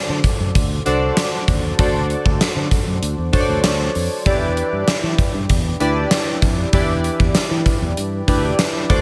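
Glossy, chorused retro synth keys with a detuned sawtooth-and-pulse bite and slapback echo open this urgent, dramatic 1980s-style pop passage in E minor at 97 BPM, joined at 0.1 seconds by a direct fingered electric bass and at 0.2 seconds by an up-front gated 80s drum kit with a fat snare, punchy kick, hi-hat and tambourine, as the harmony moves from D7 to Em7 at 4.3 seconds inside a lush hall reverb that gives the mix a big arena sound.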